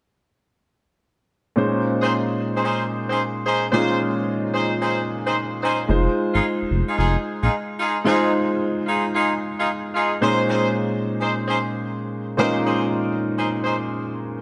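A dark, mellow grand piano with a lush chorus carries Bbm11 and Fm7 chords beneath clear, tight, jazz-style horn stabs with vibrato in this bouncy, punchy R&B fragment at 111 BPM with a swung 16th-note feel, while a smooth sawtooth-and-square synth bass with ring modulation appears only from 5.9 to 7.5 s, and the whole mix sits in a 2.2-second plate reverb with a bright 1980s-style digital sheen.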